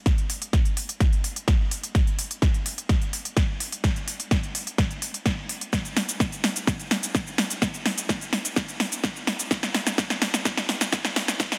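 A punchy, layered electronic kick sits up front through this 127 BPM house fragment alongside a big-room dance kit of cabasa, crisp hi-hats and a snare, its overdriven edge adding grit. The whole 11.6 seconds is a dreamy, driving build-up carried by a drum fill and a filter sweep. A lush hall reverb surrounds the parts, and the dense, heavily limited modern master has a high-pass filter on it.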